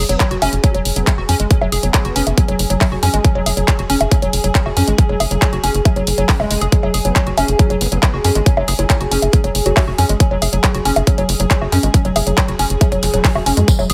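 A tight, saturated sequencer bass and a woody, wave-folded pluck riff with chorus, sidechain pumping and dub echo open this alien psychedelic trance excerpt, joined by an up-front punchy electronic kick, a layered dance kit of bongos, handclaps and hi-hat, an evolving detuned wavetable pad of sustained chords, and a nasal vowel-sweep wobble bass tucked in the background at 0.1 and 7.0 seconds, with a very quiet zap at 13.0 seconds and a jingly tambourine closing in at 13.7 seconds, all in light reverb.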